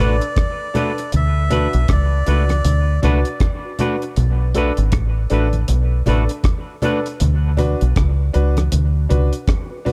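A dark, warm production in a small room sets a heavy, hypnotic mood for this dub reggae cut, taken from a longer piece and moving at 79 BPM in 4/4 with a 60% swing on the sixteenths. A deep fingered electric bass sits up front, round and punchy with a foam-muted, amped tone, playing low between G#1 and D2. Beside it, a dry, tight reggae kit of kick, hi-hat and rim click enters at 0.2 seconds, while very quiet congas with a thick-skinned, medium-tuned sound join at 0.4 seconds. A reedy, nasal melodica carries a brief breathy melody until 3.0 seconds, and a bright, clean semi-hollow guitar adds picked accompaniment with a warbly pitch drift until 7.1 seconds. A clear, woody upright piano, its action noise audible, punctuates the harmony with stabs, and melodica, guitar and piano all trail dub echo over chords alternating between Bm7 and D6.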